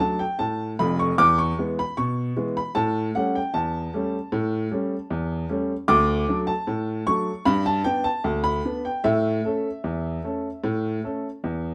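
A woody, boxy upright piano plays solo and up front through the whole 11.7 seconds, its action noise audible in an intimate, close sound with long sustain. This jaunty, cheerful ragtime moves in a straight 2/4 over changes from D through E and A7 back to D, then G and A. It is a brief cut from a longer piece, set in a moderate studio reverb.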